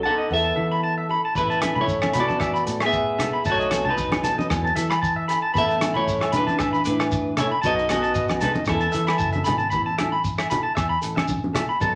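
A lightly swung 4/4 groove at 115 BPM drives this carefree highlife guitar band passage in A major, cut from a longer piece. Up front, a clean, picked electric guitar carries the melody until 9.4 s, while a bright, twangy electric guitar at the edge of break-up spins high arpeggios. A bucket-muted trombone plays a veiled, punchy second line with vibrato in the background. Beneath it, a full-bodied nylon-string guitar, fingerpicked in a deep classical manner, adds accompaniment, and a round, dark fingered bass anchors the low end. At 1.4 s a dry, muffled soul drum kit with a tight kick, hi-hat and rim click comes in alongside a grainy shekere, joined by ringing agogo bells and low-tuned, damped congas played with soft hands. The harmony circles through Esus4, Asus2 and B7 inside a wet club reverb, giving the whole a warm, carefree lilt.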